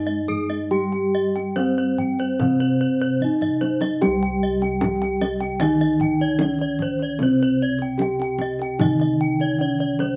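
Stately and shimmering, this dry, outdoor-sounding cut from a longer Javanese gamelan piece in C pelog moves at 69-76 BPM, with a mellow, up-front bronze metallophone carrying the melody over a softer, airy metallophone accompaniment with shimmering beats, a bright horn-mallet metallophone spinning arpeggios with slapback echo, round, beating bossed gongs in the bass, and a deep, vintage-toned kendang that plays a fill from 3.2 to 4.0 seconds before the music moves into a new section.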